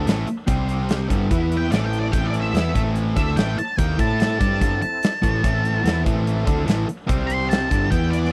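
A sludgy, double-tracked distorted guitar riff sits up front in this smoky, gritty blues rock and southern rock excerpt in A minor at 145 BPM, driven by a huge arena drum kit with a punchy kick and medium-tuned snare, a round, dark hollow-body picked bass, and a thick overdriven tonewheel organ holding sustained chords through a slow rotary speaker in the background, while a fuzzy octave-fuzz lead guitar melody enters at 1.6 seconds, all captured in a dry, close 1970s-style studio sound.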